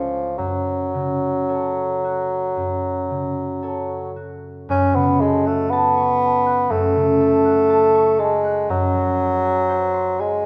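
Romantic classical duo in a melancholic, elegiac mood, this excerpt unfolds in a gently rubato 4/4 as a mellow, distant bassoon sings the melody over a ringing, thumb-plucked concert harp accompaniment spanning a broad range, both parts up front and bathed in the wet reverb of a scoring stage as the harmony moves from F#m to G#7/F# at 8.7 seconds.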